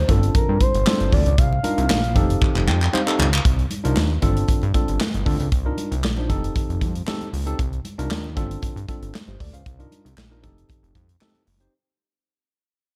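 A straight feel drives this slick, funky slice of early-eighties boogie funk, cut from a longer piece. A modern studio drum kit sits up front with a punchy kick, a medium-tuned snare, hi-hat and handclaps wrapped in gated reverb, while very quiet congas with a thick-skinned, saturated tone add a compressed layer of hand percussion underneath. A fat, detuned sawtooth bass with a plucky filter and an evolving, thick body anchors the groove, and a worn, slightly out-of-tune tine electric piano played through a combo amp fills in the chords as they cycle through G7sus4, Cm11 and F7. A smooth, gliding portamento lead with vibrato, chorus and slapback echo carries the melody only until 3.2 seconds, and from 2.4 seconds the drums and electric piano both play a fill. From 3.5 seconds the track fades out over the same chord loop, all sitting in a studio reverb.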